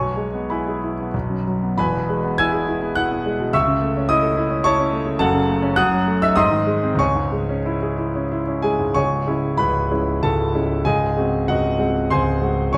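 In a flexible triple metre with generous rubato, the pulse drifts between 89 and 111 BPM, giving this romantic character piece for solo piano a breathing feel. It opens in E major, its harmony moving from E over B through A over C# before turning to C# minor at 5.2 s by way of F# minor, a diminished chord and G#. A second section begins at 9.0 s and rests on a G#7 over C#. The mood is warm and hopeful, a fragment cut from a longer work. The concert grand sounds clear, intimate and polished, placed up front with deep bass reaching down to C#1 and a top of G#6, and the noise of its action is audible. A lush recital hall reverb and a dark, warm production surround the instrument.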